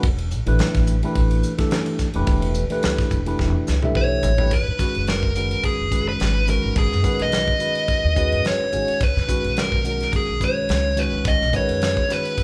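Heard as a band playing live together in one studio room, the recording carries a moderate large reverb that gives it a polished, late-night sheen. This slick, nocturnal fragment of electric jazz fusion moves in 4/4 with a light swing on the sixteenths. A barky, clean tine electric piano, tinted by a phaser, supplies the accompaniment over a woody pizzicato upright bass and an up-front studio drum kit with bright cymbals, a fat snare and a punchy kick. A drum fill at 3.4 seconds leads into the second section, where the chords move from Em7 to G#m7 and later to C#7sus4. Entering at 4.0 seconds, a dark, smooth lead guitar with overdrive carries the picked melody up front, while the bass drops out at 11.9 seconds.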